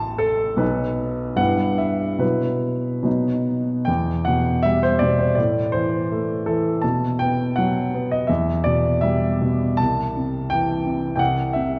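A polished, up-front baby grand piano opens this brief, brooding fragment of a romantic character piece, its bittersweet rubato in 2/4 settling into a new section at 3.9 seconds, set in a dark, warm production with a long, wet concert hall reverb.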